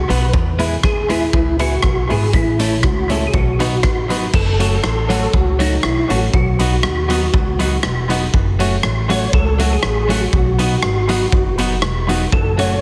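Ska at 120 BPM in a bouncy, joyful straight 4/4, this short cut from a longer piece puts a mellow, round percussive tonewheel organ on the melody, colored by chorus vibrato, fast rotary speaker, analog delay and plate reverb, over a woody pizzicato upright bass and a raw garage drum kit with a punchy kick, gritty saturation and a pumping stone-room sound sitting up front. A clean, picked electric guitar with warbly pitch drift supplies the accompaniment while an intimate upright piano, its action noise audible, adds stabs in the background, both carrying delay and plate reverb. The chords move from E to A and B before the second section at 4.3 seconds alternates F#m and B, all within a heavily compressed, radio-like mix in a moderate studio reverb.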